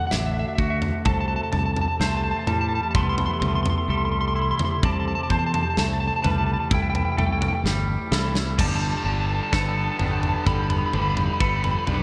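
A dreamy, reverb-soaked mix carries this cinematic, soaring post-rock excerpt at 64 BPM in G major, where an up-front, slightly broken-up electric guitar sings the melody over a glassy FM pad, twangy and clean guitar arpeggios, a round fingered bass and a big-room rock drum kit with a punchy kick, until a drum fill at 7.7 seconds gives way at 8.6 seconds to a build-up with a bright, overdriven stack guitar riff.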